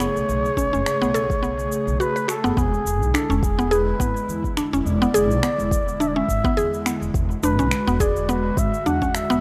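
A rough home-demo mix with light reverb carries this short, hypnotic cut of organic downtempo at 105 BPM with swung 16ths, where a veiled, raspy bucket-muted trumpet with vibrato, scooped notes and tape echo sits up front over an airy, warbling pad and a round, woody synth pluck playing arpeggios, both with chorus, while pizzicato upright bass and the pad share sidechain pumping, overdriven electronic finger snaps and cabasa tick along, and a deep, overdriven electronic kick enters at 0.6 s as the harmony moves from Amaj7 to E7 at 2.6 s.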